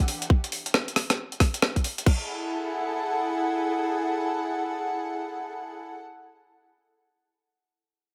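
Dark, sul tasto strings with light vibrato and a soft attack carry this brief, moody excerpt of two-step UK garage in F# minor at 136 BPM, their intimate bowed ensemble pumping under sidechain compression from the start to 6.0 seconds. A tight, layered electronic kick and a gritty, overdriven breakbeat sampler kit of crash, hi-hat and rim click drive a swung drop until 2.2 seconds, after which the strings hold a soulful F#m9 alone. A light reverb frames the close, up-front sound.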